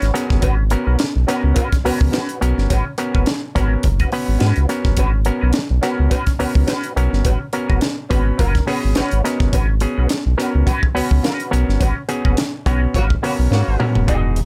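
A swung sixteenth-note funk groove at 106 BPM in 4/4 sets a cool, hypnotic mood in G# minor, resting on a G#m11 chord in this short cut from a longer piece. The crisp fusion drum kit sits up front with a punchy kick, high-tuned snare, hi-hat and toms, its gritty, saturated sound filling a small, pumping room. A round analog bass, deep and dark with a fast attack, anchors the low end as the loudest part, while a clean, fingered semi-hollow electric guitar adds hollow-body accompaniment through wah and subtle chorus. An overdriven clav fires stringy, percussive stabs through a combo amp with auto-wah and slapback echo, adding fills at the opening and again around the middle. Near the close the band hits an accent together, a distant, roomy horn section with light vibrato plays a brief second line from 12.9 seconds, and a drum fill arrives at 13.5 seconds, with light reverb over the mix.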